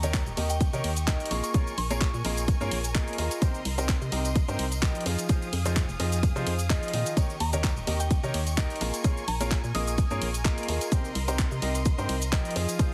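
Piano house with a soulful, bittersweet mood, cut from a longer piece, where a clear, polished baby grand riff with tape echo rides over a punchy, up-front kick, with a hollow, dark FM bass and rich bowed strings that pump with the sidechain, while a house kit of handclaps, hi-hat, ride and shaker, a dry background tambourine and a soft bell melody with chorus and tape echo, heard from 0.0 to 2.2 seconds and again from 7.4, fill out a heavily compressed, radio-like mix.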